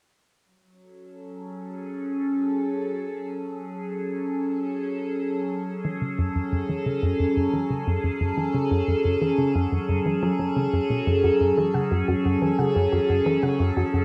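Heard through a wet spring reverb on a home cassette recording, this mysterious, expansive passage of ambient, sequencer-driven space music in F# minor at 89 BPM, cut from a longer piece, opens with a bright, morphing wavetable pad holding sustained chords up front through phaser. At 5.8 seconds a tight, punchy sawtooth sequencer bass joins with a driving riff colored by analog chorus and delay, and from 11.2 seconds a soft, warbling pluck adds gentle arpeggios with chorus and delay in the background as a new section begins.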